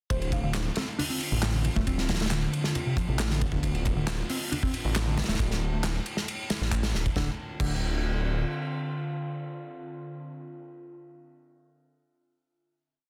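Funky and raw, this short breakbeat piece rides a looped, edited acoustic drum break, up front and pumping in a small room, with layered electronic handclaps in the background and very quiet, bright congas. A thick, menacing detuned saw bass skips through a syncopated line beside a picked electric bass repeating a 32-step sequence with tube saturation, a low-pass filter and digital delay, while a brief woody, buzzing marimba phrase with a telephone sound and delay appears in the background at 0.1 seconds. A warbling, nostalgic lo-fi pad with chorus, phaser and sidechain pumping enters at 0.7 seconds holding sustained chords, then carries the final chord after the groove ends at 7.2 seconds, all set in a dense, heavily limited modern master.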